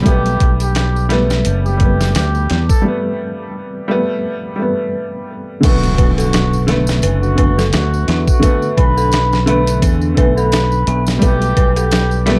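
A woody upright piano with harmonic tremolo and a punchy fingered electric bass open this hypnotic, cinematic trip hop excerpt in B minor at 86 BPM, joined at once by gritty, pitched-down boom bap sampler drums with a thumpy kick, a warm background tambourine and a veiled cup-muted trumpet melody trailing tape echo, before an eerie, inharmonic detuned synth bell arrives at 5.6 seconds with chorus, 12-bit grit and digital delay alongside an electronic impact in the background, all moving from Gadd9 to Bm7 in a dark production with light digital ambience.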